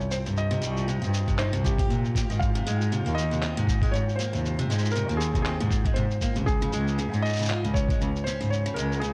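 A felt-muted upright piano opens this short folktronica excerpt, playing a soft, intimate melody through a digital delay, with its action noise audible beneath the notes. Alongside it from 0.0 seconds come muffled, pitched-down electronic shaker and handclaps with a tape-warm, sampler-style character, and a very quiet flickering, grainy texture that hangs in the background with a slow attack and long release. A picked parlour steel-string acoustic guitar soon adds boxy arpeggios, also through delay, while a single dark cello carries the bass, bowed with vibrato and portamento and sitting nasal, woody and up front. At 1.3 seconds a thumpy, compressed electronic kick drum enters, re-recorded in a small room, and it drops out at 8.0 seconds. The swung, playful and pastoral feel unfolds in a small room reverb with a dark, warm production.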